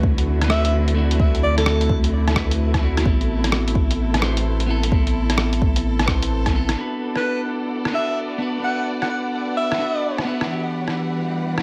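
Future garage at 129 BPM in 4/4, swung on the sixteenths, with a wistful, rainy mood, cut from a longer piece in B phrygian. A clean, picked electric guitar sits up front with sidechain pumping, a low-pass filter and digital delay, while a bowed string section holds sustained chords beneath it, its focused vibrato roughened by 12-bit sampler grit and pumping under the same filter. A round, soft dub sub bass and an overdriven electronic kick with a deep, layered thump carry the low end until the kick drops out at 6.5 seconds and the bass at 6.8 seconds, as the harmony moves from D7 and Amadd9 to Bm and Em7. A muffled, pitched-down sampler-style kit of hi-hat and rim click, tape-warm and compressed, plays almost throughout. A clear alto saxophone adds brief jazz-style phrases with vibrato, first near the start and again from 7.2 to 10.2 seconds, touched by sampler grit and delay, all in a lightly reverberant space.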